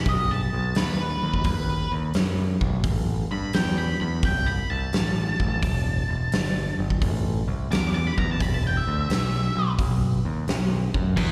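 A live gig sound comes through the venue's PA, with small room and recital hall reverb around this gritty, brooding blues rock power trio piece that leans into southern rock, cut from a longer performance. At 86 BPM in 4/4 with a swung eighth-note feel, an octave-fuzz lead guitar carries a dark, distorted solo from the start to 9.7 seconds, its picked line coloured by slapback echo and analog delay. Beneath it, a growling picked electric bass sits up front, bright and punchy with overdrive, while a huge arena drum kit with a fat snare, punchy kick, hi-hat and crash cymbal fills a big, natural room. The chords move from B through Am and Em, back to Am, then to E5 and return to B. At 11.2 seconds, a double-tracked overdriven rhythm guitar enters briefly with a picked riff just as the passage cuts off.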